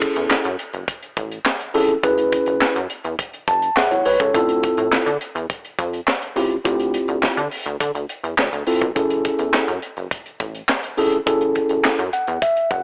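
Heard through a telephone-thin home cassette recording with moderate spring reverb, this slick, late-night early-eighties boogie funk excerpt moves at 104 BPM in F# minor. A mellow, clean tine electric piano, up front and run through cassette tape, carries the F#m9 and Dm9 harmony and adds short fills at 3.2 and 11.8 seconds, while a rubbery, hollow square-wave bass bounces beneath it with a resonant filter pluck. A tight acoustic funk kit, also on cassette tape, sits forward with a punchy kick, high-tuned snare, hi-hat and handclaps, its top end rolled off.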